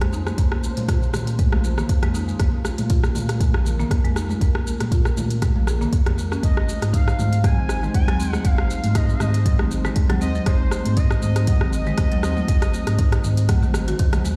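This afro house excerpt opens with a dark, detuned analog pad holding sustained chords, a buzzing, woody marimba played with medium hard mallets spinning arpeggios through digital delay, and a round sine sub bass, all three pumping against the sidechain at 119 BPM in 4/4 with a light 16th-note swing. An up-front, deep electronic kick enters at 0.4 seconds, while a produced afro-pop kit adds crisp hi-hats, rim clicks and shaker with small room ambience, and bright, band-limited congas with hard hands sit in the background. The mood is warm and earthy, moving from Bbmadd9 to Ab as a smooth, expressive sawtooth lead with vibrato, portamento and analog chorus arrives at 6.4 seconds. The pad's chorus and slow, evolving sawtooth and triangle layers give it a full-bodied depth beneath the marimba's boxy, dry attack. The whole mix carries a stone-room reverb, as if played on a big sound system in a bare room.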